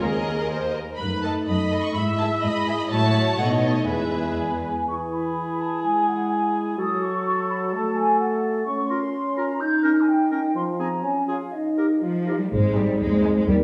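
Mellow French horns hold sustained chords up front through this playful, whimsical cinematic cue at 125 BPM in 2/4, a mischievous, quirky fragment that opens with rich, expressive violins carrying the melody over dark, woody second violins, a clear viola section and focused cellos, before the upper strings fall away at 4.4 s as a pure, crisp large flute ensemble enters, joined at 4.9 s by a distant clarinet and a lightly vibrato oboe, while the key moves from E major to Ab major, and smooth, even double basses arrive at 12.5 s beneath the returning strings, all heard from further back in a reverberant recital hall.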